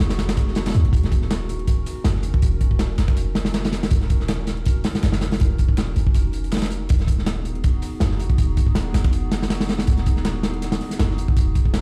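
Vinyl crackle sits over a mix that sounds as if it were played on a big sound system in a bare room, with a large studio reverb around it. This atmospheric, nostalgic drum and bass excerpt in Eb minor runs at 161 BPM in 4/4 with a light swing on the 16ths, and every part plays through the full 11.8 seconds. Up front, a crunchy breakbeat kit of kick, snare and hi-hat sounds saturated and dark, with a punchy kick and a rolled-off top. Behind it, a very quiet, pitched-up sampler-style break of hi-hat and snare adds a compressed, tape-toned layer. A deep, boomy 808-style sine bass with a noise layer and a fast, decaying attack anchors the low end between Eb1 and Eb2. Over this, a warbling lo-fi pad of detuned square and triangle tones holds sustained chords through chorus, its own reverb and 12-bit sampler grit, moving from Abm7 to Ebm7 and then to Abm7/Eb at 6.9 seconds.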